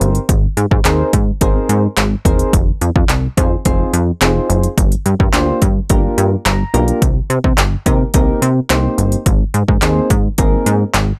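Energetic and confident, this dance-pop excerpt moves at 107 BPM in a straight 4/4, built on a chord cycle of Abadd9, Fm7, Gm7 and Cm7 that returns to Abadd9 near the close. A house drum kit with a punchy kick, crisp hats and handclaps sits up front with overdrive, alongside a plucky, funky analog bass whose sawtooth and ring-modulated tone gets sidechain pumping. Soft, round electric-piano-like synth keys with chorus and the same pumping provide mellow accompaniment, adding a brief fill between 6.2 and 7.0 seconds, all in a dry, close sound with little reverb.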